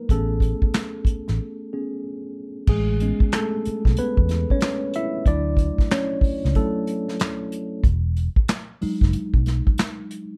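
This R&B and neo-soul excerpt moves at 93 BPM in A major, with a smooth, soulful mood and a gently swung sixteenth-note feel. A worn, slightly out-of-tune tine electric piano sits up front with a clean, direct tone, carrying the harmony through Amaj9, Dmaj9 and Emaj9 chords, with a break from 1.4 to 2.7 seconds. Beneath it, a vintage muted fingered electric bass gives a round, punchy, foam-muted low end through an amp. The unplugged acoustic drum kit, played with bundle sticks in a small, airy room, brings dark cymbals, a medium-tuned snare, a tight kick, hi-hat, crash and handclaps, all placed up front with a polished finish. The production is dark and warm, with little reverb, and the section change at 2.7 seconds opens into the longer second passage.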